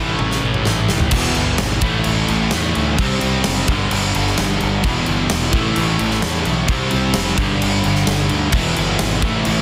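A straight 4/4 pulse at 130 BPM drives this menacing hard rock passage in A minor: a huge, punchy arena drum kit sits up front and opens with a fill at 0.2 seconds, a fuzzed, overdriven fingered bass grounds the riff, two sludgy distorted guitars (one dark, one bright and double-tracked) grind in the background beside a very quiet, dark semi-hollow guitar, and a soft, flute-like tonewheel organ through a rotary speaker adds sustained chords only at the start and again from 8.5 seconds.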